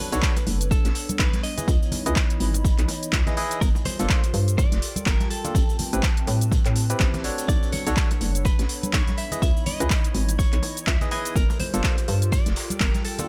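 A punchy, up-front electronic kick drives this late-night deep house excerpt at 124 BPM with a 16th-note swing, joined by smooth hats, handclaps and shaker from a layered electronic kit, a gritty, saturated garage kit with a high-tuned snare sitting in the background, and bright, close bongos and congas. A hollow, bouncy FM bass knocks beneath barky, lightly overdriven electric piano stabs with tape echo, while a clean, scooped electric guitar picks out a compressed melody through subtle chorus and echo. Two warbling, nostalgic tape-like pads, one dark and one mellow, breathe with sidechain pumping behind a moody run of Bm9, C#m9, Gm9 and Am9 chords, all in a dry mix.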